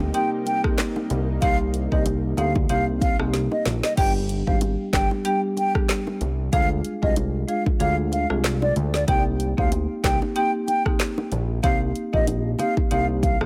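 A small-room ambience frames this sultry, tough dancehall excerpt, driven by an up-front electronic afro-pop kit of deep kick, woody snare, hi-hat, handclaps, rim clicks and crash, alongside a fat, nasal, saturated analog bass with a plucky filter. An airy, hollow silver concert flute carries the melody with vibrato and digital delay over a rosewood marimba played with medium mallets and round, low-tuned bongos set back in the mix. A lush, warbling unison pad with chorus and sidechain pumping holds chords only until 3.9 s, overlapping a drum fill that starts at 3.3 s.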